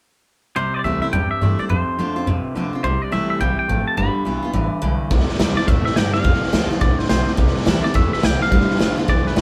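Retro and rowdy, this swung rockabilly excerpt opens with a clean, twangy electric guitar carrying the melody over a full-bodied picked steel-string acoustic, a slightly broken-up lo-fi riff guitar steeped in spring reverb, and a woody, thumpy pizzicato upright bass, until an up-front garage drum kit with a punchy kick and a rolled-off top joins at 5.1 seconds, the whole band sounding live together in one room.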